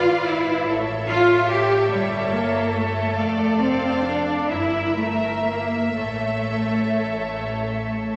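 A wet concert hall reverb surrounds this brief 8.2-second fragment, cut from a slow romantic movement for string orchestra, melancholic and solemn in mood. It moves in a rubato 6/8 at roughly 40-49 BPM counted in dotted quarters, tuned to A4 = 441 Hz. The first violin section carries the melody, bowed with vibrato and a focused, smooth top. Beneath it the second violins trace a rich, distant second line while the violas supply an even, lush accompaniment. The cellos, expressive and set in the background, share the bass with double basses that play deep and smooth with light vibrato. The harmony opens on G#dim7, settles onto A, then passes through A7/G, Dm/F and Edim/G before returning to A at 6.0 seconds.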